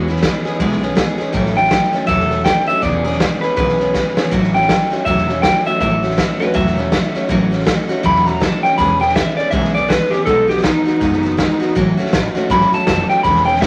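Vinyl crackle and a moderate studio reverb frame this upbeat, rowdy rockabilly cut, swinging at 161 BPM over E6, A6 and B6 chords. An electric guitar through a small old amp plays a dark, slightly broken-up solo up front, while a bright, full-bodied steel-string acoustic guitar picks its accompaniment with audible finger squeak and a pizzicato upright bass adds woody, thumpy gut-string low end. A raw garage kit enters at 0.1 seconds with a punchy kick, gritty saturation and a rolled-off top, and plays a drum fill at 3.9 seconds.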